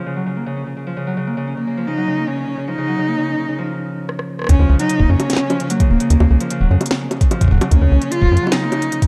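A straight 4/4 pulse at 149 BPM drives this glitchy, cerebral IDM fragment in Eb minor, which opens on mellow, ringing Celtic harp arpeggios softened by a low-pass filter and delay, joined at 1.6 s by a close, bowed cello melody with vibrato and echo, before a brief break at 3.7 s and a drum fill at 4.1 s bring in an electronic kit of bongos, crisp hi-hats, rim clicks and a woody snare, followed at 4.5 s by a soft, up-front kick and a rubbery, bouncy square-wave bass with a filter pluck and fast attack, the mix held in dark digital ambience with light reverb.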